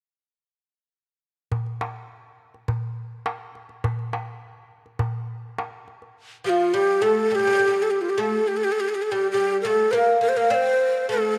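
A crisp, metal-shelled darbuka opens this soulful, hypnotic Turkish makam ensemble piece in a straight 4/4, sounding close and dry up front before it drops away at 6.1 seconds. From about 6.4 seconds a woody, plectrum-plucked fretless oud carries a deep second line on its double strings, as a breathy, mellow ney takes the melody with vibrato, tongued and slightly unsteady notes, and a tape echo, set up front. A moderate plate reverb gives the space some depth, and the passage is cut from a longer piece.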